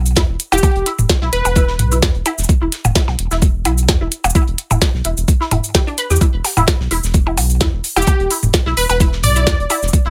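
Sparse and clinical, this minimal techno excerpt rides a swung 4/4 groove built on an overdriven, knocking electronic kick, a clicky small-room kit with a tiny snare and shaker, overdriven percussion blips and toms, and a very quiet, dry 70s kit with a fat snare underneath. A round, deep analog bass pumps against the kick while a squelchy, resonant blip pluck carries the riff through phaser, chorus, 12-bit grit and digital delay. A punchy, detuned unison lead with vibrato and cassette-tape colour states its catchy melody from 0.5 to 2.0 seconds and returns at 8.0 seconds, all in a close, nearly reverb-free space.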